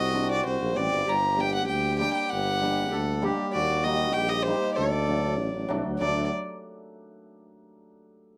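A straight 2/4 pulse at 97 BPM drives this short klezmer fragment, cut from a longer piece, in D phrygian dominant with a festive yet bittersweet mood. The violin carries the melody up front, its bowed tone pure and floating with an airy, soft-attacked sound. Beneath it, the accordion plays a second line in a reedy single-reed voice with dry tuning, while the cimbalom's hammered strings add a shimmering, ringing accompaniment. A warm tuba holds the bass with light vibrato and scooped notes, its jazz-flavoured phrasing sitting in a roomy space. All four parts play from 0.0 to 6.3 s over chords moving from Cm through Gm and Eb to D, with moderate studio reverb around the ensemble and a new section arriving at 6.0 s.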